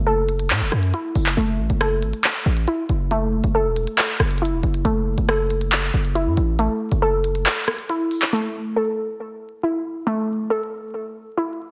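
Tense and cold, this drill excerpt moves at 138 BPM in 4/4 with a half-time feel, sitting in F# minor. A warbly, dusty pluck carries arpeggios from the start, its nasal, lo-fi tone given a filter sweep, chorus and tape echo, and it plays on after the other parts have dropped away, alone to the close at 11.7 seconds. Underneath, a hard-hitting 808-style bass with a sine body, a noise layer and a fast, decaying attack lands punchy and heavy up front until 7.5 seconds, where the kick falls silent. The electronic drill kit, entering at 0.3 seconds, brings crisp hats, handclaps and rim clicks and runs until 8.4 seconds. The harmony rests on F#m7 before shifting to A5 at 8.3 seconds, all set in a moderate recital-hall reverb with vinyl crackle over a dense, heavily limited modern master.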